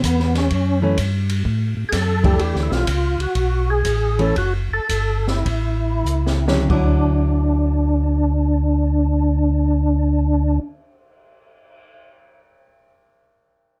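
Swung eighths in 4/4 carry this soulful, bluesy soul jazz organ trio excerpt, where a mellow, round tonewheel organ holds the bass through a slow rotary speaker, an open acoustic kit with dark cymbals, a high-tuned snare and a boomy kick keeps time as the groove slows from 2.4 to 6.7 seconds and a drum fill at 6.0 seconds leads into the second section, a fat, lightly overdriven, percussive organ with key click and chorus vibrato sings the melody up front, and a clean, picked hollow-body electric guitar accompanies it, all set in a warm production with light reverb.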